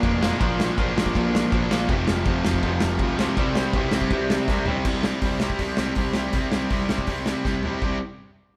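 A distorted electric guitar leads this upbeat, energetic punk rock clip, its bright, scooped, compressed riff sitting up front at 162 BPM in a straight 4/4 feel, centered on C mixolydian and moving through Bb, F and C. Behind it, an overdriven electric guitar adds a warm, picked riff in the background, while a raw, double-tracked garage guitar plays very quietly before dropping out at 4.9 seconds. A fuzz-soaked electric bass growls low in the mix, picked and overdriven. The loose indie drum kit sounds punchy and up front, with dark cymbals, a medium-tuned snare and a rolled-off top, and it throws in fills at the end of each of its two short sections. The whole band plays live in one room with light reverb and a pumping room sound, in a fragment cut from a longer piece.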